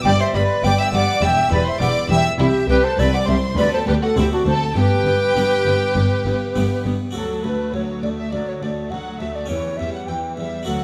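A mellow, hollow silver flute opens this lively, festive baroque-style concerto excerpt over a rich, vibrato-laden first violin section, a brilliant plucked harpsichord, lush background violas and a smooth bowed double bass section that drops out at 6.9 s, while a focused second violin line and dark, soft-edged background cellos join at 0.1 s, everything set in a recital hall's reverberant space as a new section begins at 7.2 s.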